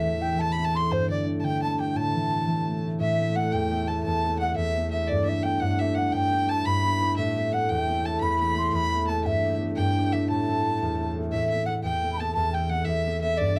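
A close, detailed recording with light reverb captures this wild, driving Celtic jig in A dorian, cut from a longer piece and moving at 115 BPM in 6/8. A mellow, airy baroque flute carries the tongued melody with a straight tone, joined by a single bowed fiddle with a rich, focused sound and light vibrato on the second line, while an up-front concert harp rings out thumb-plucked accompaniment. Underneath, a reedy, breathing pedal harmonium holds a drone with a boxy small-room character until 11.4 seconds, as the harmony circles between Am, Gadd9, Amadd9 and Em/G.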